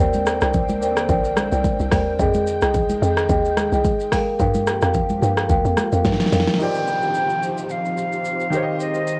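Soulful and relaxed, this brief amapiano excerpt at 109 BPM in Eb major opens with silky, pumping string-machine chords under phaser and ensemble chorus, woody up-front marimba stabs with tape echo, a hollow, bouncy log drum bass, close, dry congas in the background and a deep house kit with a deep kick, fat snare and 12-bit sampler grit. After a drum fill the marimba, log drum and congas stop at 6.5 seconds, and at 6.6 seconds an airy, chiffy concert flute melody with tape echo, smooth vintage grand piano and an electronic downlifter take over above the continuing strings and drums, all steeped in cassette tape and a small booth's ambience.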